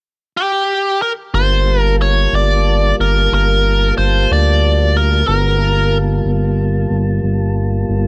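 Brooding and soulful, this slow minor-key blues moves in a 12/8 metre at 61 beats per minute with a straight feel, cut from a longer piece. A biting, overdriven electric guitar opens alone at 0.4 seconds, picking an up-front melody in a narrow upper-middle range. At 1.3 seconds a tonewheel organ and a synth bass arrive together on a G minor ninth chord. The organ holds sustained chords through a slow rotary speaker, its clear tone carrying vibrato, key click and a light touch of overdrive. Beneath it, the smooth, dark bass blends sawtooth and square waves with ring modulation, sitting up front with a fast attack and long sustain. The guitar falls silent at 6.0 seconds, leaving organ and bass to close out a dry mix with little reverb.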